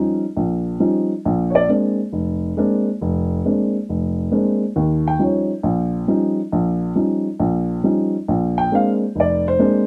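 A dark, woody upright piano sits up front in a moderate studio ambience, playing a warm, playful solo jazz excerpt in Bb mixolydian at 136 BPM in swung 4/4, moving between Eb9 and Bb9 across a range from F1 to G5 for just under 10 seconds.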